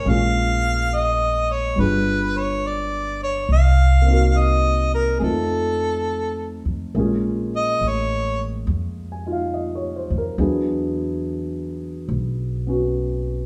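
A warm harmonica with light vibrato, scooped notes and tongue slaps carries the melody up front in this smoky, wistful swung jazz ballad excerpt, over mellow, dark grand piano chords and a woody, growly pizzicato upright bass, with the band playing live in one large studio room until the harmonica drops out at 8.4 seconds.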